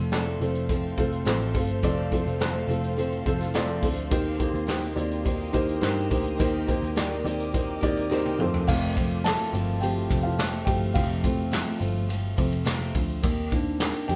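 Recorded as a band playing live in one room, this excerpt has a moderate studio ambience that keeps the sound close and natural. It is uplifting, anthemic piano-driven pop in a straight four, moving between F and Cm7. A soft, felt-muted upright piano carries the accompaniment with a boxy, intimate tone and audible action noise. Beside it, a full-bodied steel-string dreadnought plays a picked riff with fresh strings and the odd finger squeak, while a dark, round, foam-muted electric bass anchors the low end. A punchy, up-front country drum kit with a medium-tuned snare, handclaps, ride, toms and crash cymbal drives the groove. An ethereal, detuned sawtooth pad with ensemble chorus and reverb hovers in the background through a drum fill at 8.1 seconds and fades at 8.7 seconds, when the mellow felt piano takes a solo through to the end.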